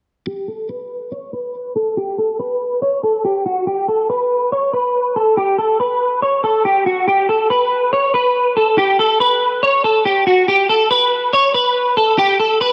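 Brooding and dark, this half-time hip hop fragment features an electric guitar at the edge of break-up carrying the melody from 0.3 to 12.7 seconds, its bright, twangy picked tone sitting up front with ensemble chorus and a low-pass filter sweep, all set in a lush hall reverb within a shadowy, warm production.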